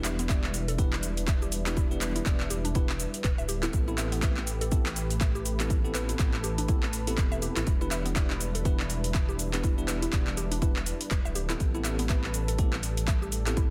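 A spiritual, driving afro house excerpt, swung on the sixteenths, that moves between Em7 and Am9 as a dark, detuned saw bass rumbles with tube saturation beneath a moody analog pad of sustained chords, both pumping with sidechain. Woody, round mallet-like synth arpeggios sit in the background with chorus and dub echo, while bell-like tine electric piano stabs ring clean and bright through their own dub echo. An overdriven afro-pop kit of cabasa, handclaps and metallic hi-hats rides under a punchy, layered electronic kick that enters at 0.3 seconds, all in light digital ambience and a dense, heavily limited master.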